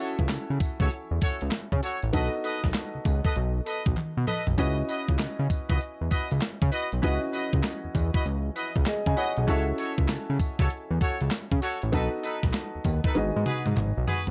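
This bouncy, slick R&B excerpt in new jack swing style moves at 98 BPM in C# minor, with swung 16ths and a dry mix. A thumpy, up-front 12-bit drum machine with a medium-tuned snare, tambourine and toms drives the groove, alongside a fat, saturated analog bass built from detuned sawtooth and square waves with a filter sweep, and a very quiet, hollow group handclap. A natural-sounding baby grand piano plays chords from A6/C# through B7 to C#m11, while a distant, roomy jazz horn section adds tight stabs with light vibrato and digital delay, and drum fills arrive at 4.0 and 13.2 seconds.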